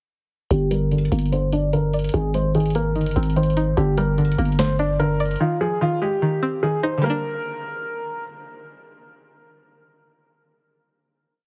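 A half-time trap beat at 147 BPM opens this eerie, melancholic hip hop piece in G phrygian, with a booming, overdriven analog drum machine of crisp snare and metallic hi-hat rolls under long growling 808 sub-bass notes with pitch slides, both dropping out at 5.4 s while a worn baby grand piano repeats a looping, delay-touched melody up front and a twangy, chorused resonator pluck plays a filter-swept pedal-note arpeggio in eighths through the breakdown, ringing on over the final Gm chord from 7.0 s to 10.6 s, all heard through a heavily compressed radio-like sound.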